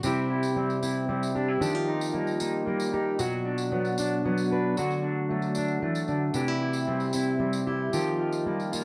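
A lightly reverberant, softly rolled-off recording carries this nostalgic, hopeful acoustic folk excerpt in a straight 3/4 at 114 BPM, where an up-front, woody, full-bodied fingerpicked steel-string acoustic guitar with old strings plays the accompaniment beside a twangy, slightly broken-up electric guitar playing arpeggios through a small old amp with harmonic tremolo, while a glassy, ethereal glass harmonica holds slow-attack sustained chords in the background and a jingly tambourine adds percussion throughout the chords C, Ebadd9, Bm and D.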